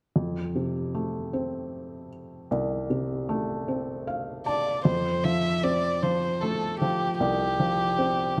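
A swaying 6/8 lilt carries this romantic pop excerpt, where a mellow felt-muted upright piano, intimate and up front with audible action noise and short sustain, plays a fill at 3.7 seconds before a sul tasto violin, close and bowed with vibrato, a soft attack and an airy tone, takes the melody at 4.5 seconds, all within a dark, warm production and a moderate concert hall reverb.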